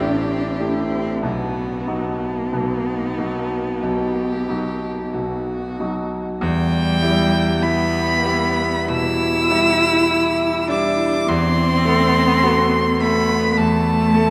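This classical piece is a slow, romantic movement for piano trio in E minor, cut from a longer work, with a yearning, elegiac mood. It moves at a slow 45-53 BPM in 4/4, with an elastic rubato feel and tuning set slightly high at A4 = 441 Hz. A single violin carries the melody with a warm, focused tone, a smooth top and vibrato, standing up front. Beneath it, a single cello sings a rich second line with a soft attack, expressive portamento and vibrato. The bright, brilliant concert grand supplies the accompaniment up front, its deep bass and long sustain ringing openly. The trio sounds as if it were playing in a vast, echoing cathedral, and the harmony moves from A and B toward E minor around 6.4 seconds, then shifts to F#dim over E near 11.3 seconds.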